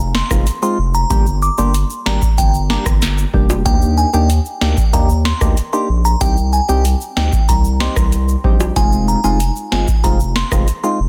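Sunny, summery dancehall at 94 BPM in a straight 4/4, this brief cut from a longer piece rides a deep, saturated sub bass and a booming analog drum machine with crisp snare and metallic hats up front, while a crystalline FM synth bell carries the melody through chorus, tremolo and delay, a hollow, wave-folded organ stab pumps under chorus and phaser, and soft-handed egg shaker and ringing timbales sit low in a dry, dense, heavily limited mix over chords moving from Fm7 through Gm, Ebmaj7 and Cm back to Fm7.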